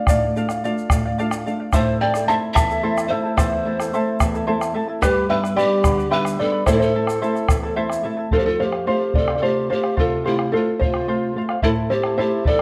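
A steady, straight 6/8 pulse carries this festive yet wistful Andean folk excerpt, where a soft, felt-muted upright piano sings the melody with audible action noise, a shimmering fingerpicked charango and a dark, thumb-plucked nylon-string guitar accompany, a round bombo and a grainy tube shaker (until 8.0 s) provide percussion, the guitar adds a brief fill at 4.2 s, and a distant, breathy bamboo pan flute with vibrato and chiff enters at 1.7 s as a second line, the whole set in a moderate recital hall reverb.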